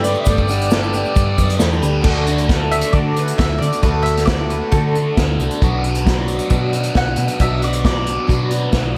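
Set in a small, lightly reverberant room, this hopeful folk rock and heartland rock excerpt moves at 135 BPM in D major, with a round hollow-body electric bass, a distant, roomy acoustic drum kit played with bundle sticks, picked dreadnought acoustic guitar, and a bright, double-tracked overdriven guitar riff under a phaser, while a reedy, band-limited accordion with analog delay and a grainy background tube shaker sound only briefly at the start before a woody mandolin takes a solo from 2.7 seconds over chords moving from Gadd9 to D to Bm.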